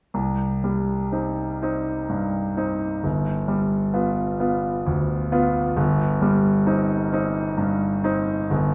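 A clear, up-front concert grand piano opens this brief fragment of a romantic nocturne, playing alone from 0.1 to 8.7 seconds in C minor with a yearning, wistful mood at a slow 44 BPM in 6/8 with a free, rubato feel. Its deep bass and open tone move from C minor to G7 and back to C minor over G, tuned to A4 = 443 Hz, and sit in a wet concert-hall reverb with a 2.3-second decay.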